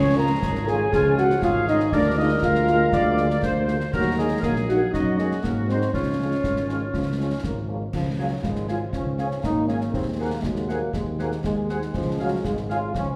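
Spirited and festive, this military-style march for wind band in a straight 2/4 is cut from a longer piece, with a dark trumpet section carrying the melody over a mellow euphonium and a warm, tight woodwind section on second lines, sustained chords from a bright, close-miked trombone section, and a punchy, up-front tuba on bass. A very quiet French horn section with a vintage tinge adds accompaniment from 0.2 s, while concert snare drum, concert bass drum and clash cymbals with dark cymbals enter at 0.4 s. The classical-style playing, marked by light vibrato in most sections, sits in a wet recital-hall reverb, and the two matching passages turn back home to Db at 11.9 s.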